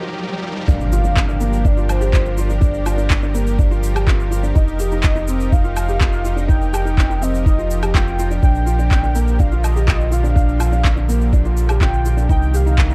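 A straight 4/4 groove at 124 BPM drives this moving, hypnotic piano and strings electronica in G minor: a riser climbs through the opening break over a lush, nasal unison pad with chorus holding sustained chords, a deep house drum kit with overdriven handclaps, shaker, toms and woodblock slips in with a fill at 0.4 s, and the drop lands at 0.7 s with an electronic impact and a muffled, thumpy, pitched-down electronic kick. From there a round, deep analog bass with ring modulation pumps under the kick, and a soft, intimate felt-muted upright piano plays a riff through digital delay. Above them a velvety synth lead with vibrato carries the melody, all in a dark, warm production with digital ambience, moving through Gm7, F9sus4, Bb6 and Cm7.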